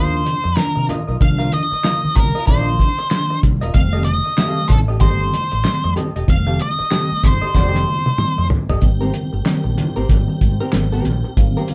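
Cool and funky, this short cut from a longer funk piece sits at 94 BPM in 4/4 with a 16th-note swing, as a dark, distorted octave-fuzz lead guitar carries the melody up front over a compressed, twangy clean electric guitar, mellow tine electric piano stabs, a round fretless electric bass and distant, low-tuned congas. A cloth-damped, thuddy drum kit with fat snare, tight kick, hi-hat, toms and handclaps drives the groove through chords moving from Cm11 to F9, and a drum fill at 7.6 seconds leads into an Abmaj9 change. At 8.8 seconds the lead guitar has already dropped out and a piping tonewheel organ enters with sustained chords, key click and chorus vibrato, all set in the modest reverb of a band playing live in one room.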